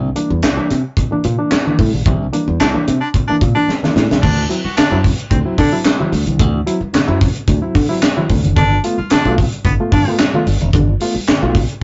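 A rough rehearsal-room sound with a moderate booth ambience and warm saturation, its highs rolled off, frames this strutting, energetic funk cut from a longer piece, moving at 111 BPM in D mixolydian over C9, D9 and G9 chords. A tight funk kit with high-tuned snare, crash, hi-hat and handclaps sits up front with a punchy, bright fingered electric bass, while a barky, reedy electric piano plays stabs through overdrive and fast tremolo and thin-skinned congas sit in the background. An edgy baritone saxophone with vibrato enters at 2.6 seconds for a second line, amid a band accent and a drum fill that lead into the new section at 4.2 seconds.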